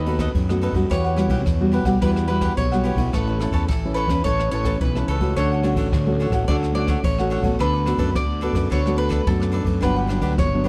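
Playful and sunny, this short cut from a longer samba and choro piece moves at 108 BPM in a straight 4/4 feel, set in D major. A bowl-back mandolin carries a second line in its double-strung, picked voice, while a crisp, bright cavaquinho and a thumb-plucked nylon-string guitar with a classical warmth fill out the accompaniment. Underneath, a fingered electric bass sits up front with an overdriven fuzz tone, direct and amped, giving the low end a gritty edge. A jazz kit played with brushes joins at 0.1 seconds, its boomy kick, dark ride cymbal and rim clicks sounding as if from a small room. The harmony travels from B7/D# through Emadd9 and Aadd9 to Dmaj7, Bm7/D and Gmaj7, all captured in a dry, close recording with a 1970s studio character.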